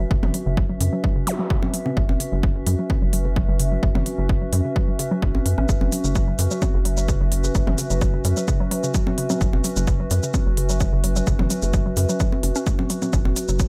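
A punchy, up-front analog kick anchors this cool, hypnotic minimal techno excerpt at 129 BPM in straight 4/4, joined by clicky, overdriven hi-hat and shaker and layered electronic toms and congas carrying tape echo, with a brief electronic zap at 1.3 seconds. A rubbery square-wave bass and a bouncy, hollow pluck riff trailing dub echo both pump against the kick, while a warbly, nostalgic lo-fi pad drifts above with chorus and its own reverb, all resting on a single F#7(no3) chord. A filter sweep runs through the synth arpeggio sound across the full 13.7 seconds, and the overall mix stays fairly dry.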